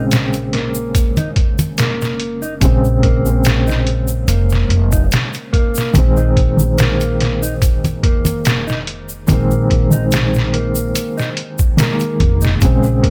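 Smoky and melancholic, this trip hop excerpt moves at 72 BPM in 4/4 with a light swing on the sixteenths, cut from a longer piece and sitting on a Bbm9 chord before shifting to Ab at 5.9 seconds. A felt-muted upright piano carries the accompaniment in a boxy, thick-felted low register, treated with tremolo, tape echo and a low-pass filter that sweeps across the whole passage. A clean, fingered electric guitar plays mellow arpeggios set back in the mix, its dark tone trailed by its own tape echo. Underneath, a pizzicato upright bass on steel strings gives a woody, growly foundation, while a gritty, pitched-down sampler-style drum kit with a thumpy kick and medium-tuned snare sits up front from 0.1 seconds. Close, dry tube shaker and congas played with hard hands add acoustic texture, and a studio reverb lends the room a hazy depth.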